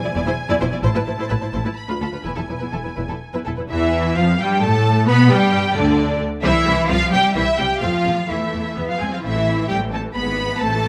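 Close, detailed microphones in a moderately reverberant recital hall capture this stormy, dramatic classical-period movement for string orchestra in triple time, cut from a longer piece, where a lush, up-front violin section carries the melody over a smooth second violin line, an intense, clear viola accompaniment and a focused cello bass, joined at 0.2 s by a rich double bass section, all bowed with vibrato.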